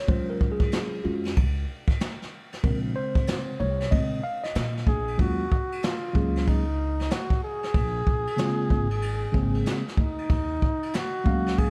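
A breathy flugelhorn carries the melody from 4.9 seconds, its soft attack, gentle vibrato and smooth top giving this smoky, cool jazz-hop fragment its jazz-styled voice. Before it arrives, a worn, slightly out-of-tune tine electric piano takes the spotlight, laying down mellow, clean minor chords as a rootless Ebm11 alternates with Bbm7. Underneath, a plucked upright bass with steel strings adds a woody, thumpy low end. A brushed drum kit sits up front yet sounds distant and roomy, with dark cymbals, a medium-tuned snare and a boomy kick behind a lazy swung groove. The whole track has a dark, small-room production dusted with vinyl crackle, and the second section begins at 5.2 seconds as the horn settles in over the same chord cycle.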